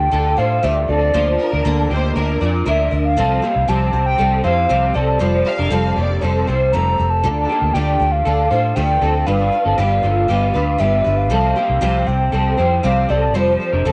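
Indie pop at 118 BPM in C mixolydian, bright and nostalgic, with a hollow, woody clarinet-like synth lead carrying the melody over picked steel-string acoustic guitar, slightly broken-up electric guitar arpeggios through a small old amp, and a round, foam-muted electric bass sitting up front. A lush, distant violin section adds a second line with portamento from 1.4 to 6.6 seconds, while the chords move through Dm, Bb/D, Csus4, Fadd9 and G7. The home cassette recording gives the lead, guitars and violins a tape-softened sound in a light reverb, and this short cut comes from a longer piece.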